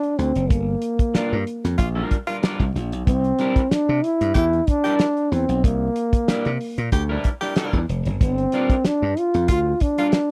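Hypnotic and driving, this short funk passage in G dorian moves at 94 BPM in a straight 4/4, cut from a longer piece. A breathy, dark trombone carries the melody from the very start, its whispered, intimate tone marked by soft attacks, scooped notes and light vibrato, sitting up front in a jazz style. Beneath it, a damped 1970s drum kit with a fat snare, tight kick and rolled-off top plays hi-hat, kick and snare, while a punchy, bright slap bass joins at 0.2 seconds, direct and amped. An electric guitar at the edge of break-up, twangy and slightly broken-up, adds fingered accompaniment dressed in lush chorus from 1.1 seconds, and an edgy, forceful tenor saxophone, close-miked with light vibrato, enters as a second line at 1.8 seconds. The harmony moves from Gm7 to C9 and back to Gm7, all captured in a dry, close studio sound with small room ambience in the manner of the 1970s.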